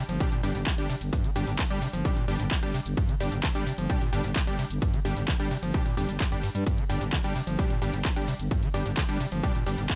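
A straight pulse at 130 BPM drives this relentless, intense slice of peak-time techno in G phrygian, cut from a longer piece. The heavy electronic kick sits up front, overdriven and layered, while a techno kit of handclaps, hi-hat, ride cymbal and shaker adds its own overdriven grit in a studio ambience. Underneath, a growling FM bass built on a sine tone holds a thick, sustained low end from G1 to G2, with a sidechained pump. Over it, a squelchy, resonant acid riff on a square wave moves through filter sweeps between F2 and G3, saturated and decaying, with delay and the same pumping motion. Bright, punchy supersaw stabs in detuned unison cut through from G3 to G4, also swept, delayed and pumping, all over a G5 chord inside a digital ambience that carries a faint mains hum.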